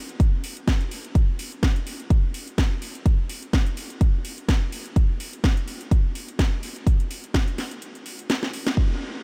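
A gritty, tape-warm sound re-recorded in a small room with light reverb frames this bouncy house excerpt at 126 BPM in 4/4 with a 16th-note swing, where an up-front, punchy electronic kick drives alongside a layered house kit of cracking snare and metallic, low-pass-filtered hats from 0.1 seconds, before a break at 7.8 seconds, a drum fill at 8.4 and a band accent at 8.7 close the passage.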